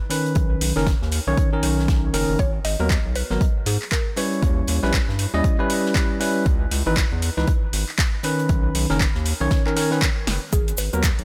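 Bell-like electric piano stabs with dub echo and sidechain pumping, a punchy, overdriven deep house kit of handclaps, snare and metallic hats, and a very quiet airy acoustic studio kit open this hypnotic, smooth deep house excerpt in G# minor at 118 BPM, joined by an up-front deep electronic kick and a round analog bass that pumps beneath Bmaj9 and G#m9 chords, while a woody, mallet-like synth pluck with chorus, phaser and digital delay drifts in at 2.4 seconds, and a grainy cabasa appears in the background after a drum fill at 10.3 seconds.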